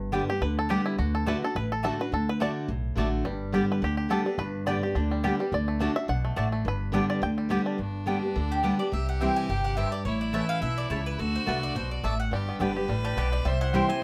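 A twangy, fingerpicked five-string banjo leads this joyful, rustic bluegrass passage in G major, soloing through the first 7.8 seconds at a brisk 212 BPM with a light swing, while a full-bodied dreadnought guitar with audible finger squeak and a thumpy pizzicato upright bass sit up front, and a bright, round mandolin adds stabs. At 7.8 seconds a clear, earthy fiddle with light vibrato enters on a second line, soon joined by a woody second mandolin taking the melody. The banjo returns at 12.3 seconds, all captured close and dry with crisp detail.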